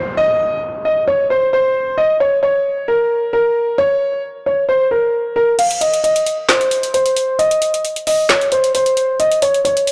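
A dark grand piano opens this dark, melancholic trap excerpt, carrying the melody between Bb4 and F5 with a mellow, boxy tone, long sustain and a low-pass filter that dulls its top end. An electronic downlifter sits quietly underneath for the first 2.0 seconds before falling away. The tempo is 133 BPM in 4/4 with a half-time feel, and the tuning sits at A4 = 442 Hz. At 5.6 seconds a produced electronic trap kit joins up front: crash cymbal, handclaps, metallic hi-hats and a woody snare drum. The piano stays prominent throughout, while the recording as a whole is set in light reverb and digital ambience and sounds blown-out and overdriven.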